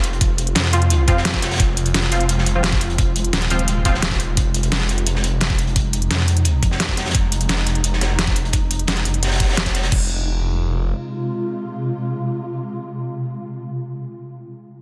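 A thick, swirling detuned saw bass with phaser, overdrive and a filter sweep opens this dark, mechanical drum and bass excerpt at 173 BPM in F minor, alongside an up-front dubstep kit of deep snare, crisp hats and crash, a gritty, rolled-off breakbeat kit with a high-tuned snare, and a knocking electronic kick. A swarming, nasal drone of detuned sustained chords with a granular texture pumps against the beat through built-in reverb, while a bold, punchy orchestra-hit-like stab with ring modulation and delay flares briefly near the start. The drums drop out at about 10 seconds, the bass follows shortly after, and the tense drone carries on alone to 13.5 seconds in a dense, heavily limited master with light digital ambience.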